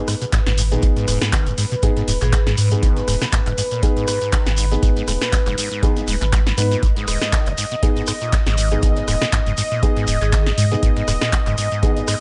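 A squelchy, resonant sawtooth acid bass drives this trippy, hypnotic acid house excerpt, its riff running through a phaser, overdrive, subtle chorus and analog delay with a filter sweep. Beneath it, a deep, tape-warm analog kick sits up front beside a round sine sub bass with tube saturation and sidechain pumping. An electro drum machine adds punchy snare, metallic hats and handclaps with a short room on them, plus rim clicks, all over a swung sixteenth-note feel, while a very quiet, overdriven sampler-style kit contributes hi-hat and snare and a grainy shekere sits close but in the background. Detuned sawtooth pad chords, chorused and pumping, sustain a single chord throughout, joined by dark, intimate baby grand piano stabs with audible action noise echoing through analog delay. A metallic vibraphone with fast motor vibrato rings briefly at 2.2 and 10.2 seconds, and the whole recording is dry and gritty, with a hardware sound dulled at the top end.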